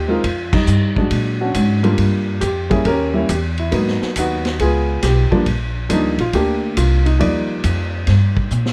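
The recording is close and dry, with little reverb, and it puts the piano and bass up front while the drums sit mid-forward in a studio room. This short fragment of a jazz piano trio swings with a sophisticated, playful air. The smooth, vintage-toned grand piano carries the melody with a short sustain, and the plucked upright bass, woody and thumpy on steel strings, starts alongside it. The acoustic drum kit joins at 0.2 seconds with dark cymbals, a medium-tuned snare and a punchy kick under a rolled-off top. The trio hits a band accent at 0.5 seconds, and the harmony moves through F7sus2, Bb7alt and Eb7b9 before arriving on Ebmaj7, with a drum fill at 8.5 seconds as the piano drops out.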